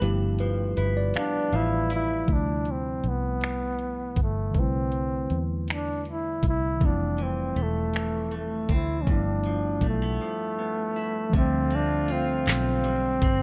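Late-night and yearning, this slow six-eight R&B fragment at 53 BPM sits in D dorian, drifting through lush chords like G13, Dm11 and Cmaj13 over an up-front electronic drum kit of knocking kick, metallic hats, finger snaps and handclaps, with a dark, round, foam-muted fingered bass beneath. A worn, slightly out-of-tune tine electric piano opens with a brief solo turn and keeps comping throughout, while a clean, picked electric guitar bathed in spring reverb adds a second line that drops out and returns at 6.8 seconds. From 1.2 seconds a breathy, whispered flugelhorn carries the melody close and intimate with light vibrato, and a distant, roomy jazz horn section punctuates it with tight stabs in the background from 11.3 seconds.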